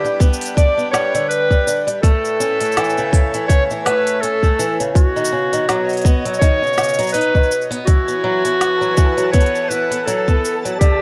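A dark, warm production with light reverb frames this delicate, wistful folktronica excerpt, where a bright, up-front clarinet sings a classical-style solo melody with tape echo over reedy, slowly beating accordion chords and a boxy, fingerpicked acoustic guitar whose swung arpeggios carry audible finger squeak and their own tape echo. Underneath, a tight electronic kick sits up front while an organic electronic kit adds a woody snare, crisp hats and shaker, both sounding re-recorded in a small room, with a lilting swing on the sixteenths. At 8.1 seconds a twinkling granular texture with an octave-up shimmer fades in softly in the background, glinting through its own reverb as the chords drift from G toward Esus2.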